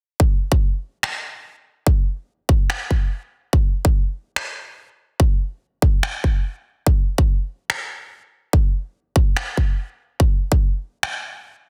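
Euphoric and bright, this short future bass passage moves at 144 BPM in 4/4 with a half-time feel, built only from drums. A punchy, layered electronic kick sits up front from 0.2 seconds, and from 1.0 seconds it is joined by quieter layered electronic finger snaps carrying a touch of soft clipping, both kept dry with little reverb. The dense, heavily limited modern master gives this fragment of a longer piece a tight, forward sound.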